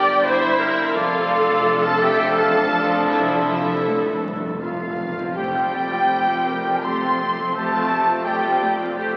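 Hopeful and moving, this cinematic film-score passage for full orchestra unfolds in a flexible, rubato triple metre, cut from a longer piece and moving from a Gm7 opening through Dmadd9/F to a resolving Fadd9 at 5.4 seconds. A lush studio violin section carries the melody with rich, focused vibrato, while a close second symphonic violin section adds a supporting line and a mellow large flute ensemble with pure straight tone, a warm oboe and a distant, roomy clarinet weave further lines in the background. A bright, intense viola section fills out the accompaniment, warm French horns hold sustained chords beneath, and bowed cellos and distant, even double basses anchor the low end. A very quiet concert harp rings out fingerpicked arpeggios, and timpani struck with hard mallets add an articulate fill from 1.0 to 5.4 seconds before falling silent at 6.4 seconds. The whole ensemble sits in a spacious concert-hall reverb and carries the crackle and aged character of a very old 78 rpm record.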